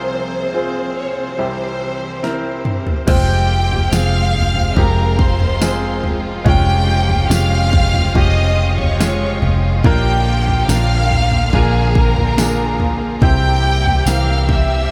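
Longing and heartbroken, this pop ballad moves at a slow 71 BPM in F minor, a short passage lifted from a longer piece. A lush, expressive violin section carries the melody up front, its bowed vibrato tone soft in attack yet slightly distant, while a clear, polished baby grand piano plays the accompaniment and a smooth, even string section holds sustained chords in the background. A drum fill at 2.2 seconds brings in the pop drum kit, whose punchy kick, fat snare, crash cymbal and toms sound electronic and layered, set back in the mix. At 3.1 seconds a dark, round, foam-muted electric bass arrives up front with an amped, punchy presence, and a jingly acoustic tambourine joins just after, sitting close but low. The chords move from F minor through D-flat and B-flat to C, and a huge ambient reverb soaks the whole mix in a dreamy haze.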